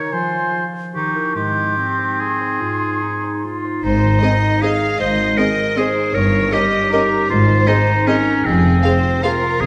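Classical orchestral ballroom waltz, festive and elegant with a rubato lilt in 3/4, opening with a bright clarinet and a clear, up-front oboe over ringing harp arpeggios and an airy, hollow flute, before lush bowed strings arrive at 3.8 s: cellos and double basses carry the bass, a smooth violin section joins the clarinet on the second line, and from 4.2 s a focused violin melody and a dark, woody viola accompaniment sit in the background, the whole set in a wet concert-hall reverb.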